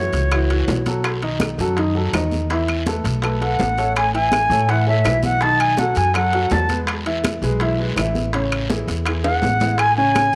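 A straight salsa groove in 4/4 is carried by a bed of percussion, much of it kept in the background: damped, high-tuned congas played with soft hands, tight, vintage-sounding bongos, ringing metal-shelled timbales and woody claves, joined by a raspy guiro. Up front, the upright bass plays pizzicato on gut strings with a thumpy tone, while a boxy grand piano supplies the accompaniment throughout. The reedy silver concert flute carries the melody with an airy, crisp attack and vibrato, sounding somewhat distant yet prominent; it enters briefly at the start, returns at 3.4 s and comes back at 9.2 s. Beneath it, the chords run from F#m7 to B7 and A, back to B7, then E and finally Amaj7. A drum fill at 9.2 s punctuates this festive, joyful passage, which is cut from a longer piece and set in a light studio reverb.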